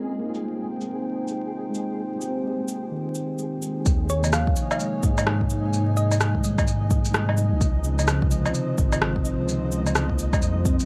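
A swung 128 BPM future garage pulse in 4/4 carries this rainy, nocturnal excerpt, where muted felt-like synth keys with a filter sweep, a moody detuned analog pad and a flickering grainy texture open over Abmaj7 as electronic cabasa, shaker, woodblock and rim click patter in at 0.3 seconds, before a deep kick and a rumbling, tube-saturated detuned saw bass arrive at 3.9 seconds on Eb7sus4, a tine-like thumb-piano pluck glints briefly in the background, and the whole dry mix sits under vinyl crackle and a low-pass filter.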